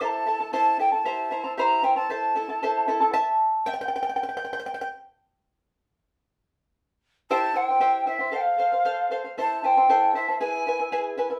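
Wistful yet festive, this Andean folk excerpt moves at 116 BPM in a straight 2/4 in A minor, with a large wooden quena singing an airy, vibrato-tinged melody with a soft attack over a bright, fingerpicked charango whose double strings shimmer. The quena drops out at 2.8 seconds and the charango carries on alone until 4.9 seconds. Both return at 7.3 seconds over a C, F, A minor and E progression, played live together in one room with a wet studio reverb.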